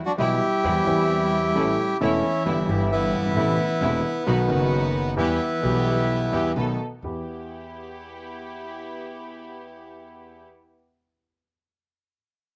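Tango in E minor at 132 BPM with a rubato feel, dramatic and sultry, taken from a longer piece. A reedy, dark bandoneon leads up front with slapback echo, shadowed by a close, expressive bowed cello with vibrato and portamento, while a woody, growly pizzicato upright bass and a concert grand piano with deep bass carry the harmony beneath soft, floating sul tasto string stabs set distant in the mix. The bandoneon and cello fall away at 6.5 s and the bass follows at 7.2 s, leaving piano and strings to carry on until 10.4 s, in a dry open-air sound with little reverb.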